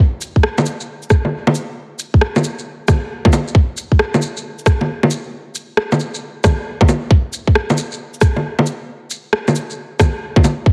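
An equally forward, produced blend of electronic cabasa, shaker, rim click and bongos opens at 0.2 seconds, joined at 0.4 seconds by a tight, layered electronic kick drum sitting up front, giving this nocturnal, wistful future garage excerpt its swung 135 BPM 4/4 pulse, heard through light reverb and a heavily compressed radio-and-cassette-tape sound.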